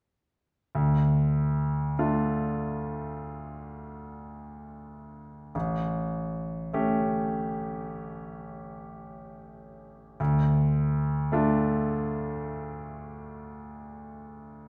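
Mournful and melancholic, this short fragment of a romantic classical nocturne unfolds in a slow, rubato four, on a solo grand piano placed up front with a bright, natural tone. The piano sounds from 0.7 to 14.7 seconds, staying in its low and middle register. Its harmony moves from a minor chord to a dominant seventh and back again, all bathed in the lingering reverb of a recital hall.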